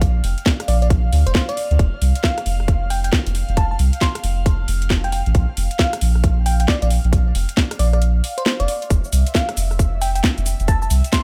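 A sparkling, bell-like FM electric piano carries the melody from 0.7 seconds, treated with chorus, phaser and dub echo, over a soulful, bouncy two-step UK garage groove at 135 BPM with swung 16ths, where a tight, up-front electronic kick and a house kit of cracking snare, metallic hi-hats, rim click and cabasa sit in studio reverb, a deep, round dub sub bass holds the low end, and an airy, breathy pad with chorus, phaser and sidechain pumping sustains chords beneath, the kick dropping out between 8.0 and 8.9 seconds in this dry mix cut from a longer piece.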